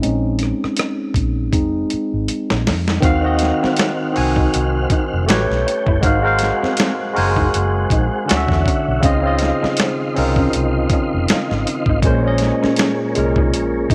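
R&B with a neo-soul lean, this sultry, late-night excerpt from a longer piece moves with a gently swung sixteenth-note feel. A bright, barky tine electric piano sits up front, lightly overdriven through a combo amp with a phaser, and it leads the opening passage over a dusty, sampler-style drum kit whose thumpy kick, medium-tuned snare, rim clicks, hi-hat and finger snaps sound gritty, compressed and tape-warm. Underneath, a vintage fingered electric bass, foam-muted and amped, gives a dark, round low end, and the drums play a fill from 1.5 seconds into the change at 3.0 seconds. There, a smooth, clean tonewheel organ arrives with sustained chords through a slow rotary speaker and chorus vibrato, while an electric guitar through a small old amp adds a slightly broken-up, lo-fi picked second line in the background with subtle chorus. Extended chords such as Ebm69, Ab13 and Dbmaj9 give the harmony a lush colour, all set in a light digital ambience.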